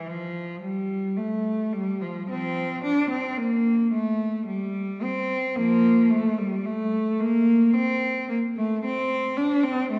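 A rich, focused solo cello carries this short excerpt from a longer baroque-style suite movement for unaccompanied cello, a single bowed player singing with vibrato and a smooth top across a range from F3 to D4. The mood is grave yet flowing, set at a slow 55 BPM in 3/4 with a rubato feel that lets the phrases breathe. Tuned to A4 = 437 Hz, the instrument sits slightly below modern concert pitch. The cello is placed up front, while a concert hall reverb with a 1.9-second decay surrounds it, giving the impression of a listener seated further back in the room. The passage runs for 10 seconds as one continuous statement, the lone line sustaining its solemn character throughout.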